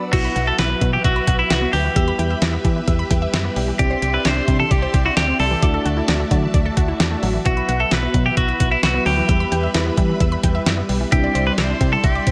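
Synth-pop in E minor at 131 BPM, this cool, driving excerpt from a longer piece runs about 12 seconds in a straight 4/4. A clean 12-bit digital drum machine sits up front with a thumpy kick, fat snare, hi-hat and crash, its sampler-style hits sounding as if re-recorded in a small room, while a solid FM bass adds punchy, round, dark low notes. A bright, twangy clean electric guitar carries the melody up front, picked and compressed with a touch of delay, as a detuned sawtooth unison pluck spins arpeggios in the background through its own delay. Beneath them, an FM electric piano with a soft pad layer gives dreamy, lush accompaniment colored by chorus and phaser, and a vintage string machine voiced as violas holds warbling sustained chords with ensemble chorus. The harmony cycles through Bsus4, Em, Cadd9 and Dadd9, and light reverb lends the whole mix a digital ambience.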